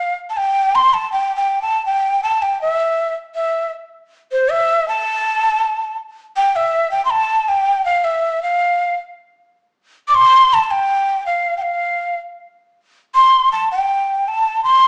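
Andean folk in A minor at 80 BPM in a straight 2/4, earthy and wistful: this excerpt from a longer piece is a solo cane quena, breathy and hollow with vibrato and tongued notes. The quena sits up front between C5 and D6 from 0.0 to 14.9 s and moves into a new section at 6.4 s, recorded live in one room with moderate large-studio reverb, a small-speaker sound and tuning at A4 = 442 Hz.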